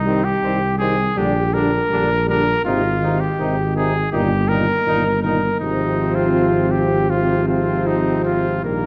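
Triumphant and stately, this classical brass quintet passage moves at 81 BPM in 4/4 through a short chord progression beginning on C minor. A clear trumpet carries the melody up front with light vibrato and a smooth top, while a dark tuba anchors the bass beside it. Behind them, a mellow, distant second trumpet, a clear trombone and a warm French horn fill in the harmony, all set in the reverberant glow of a recital hall.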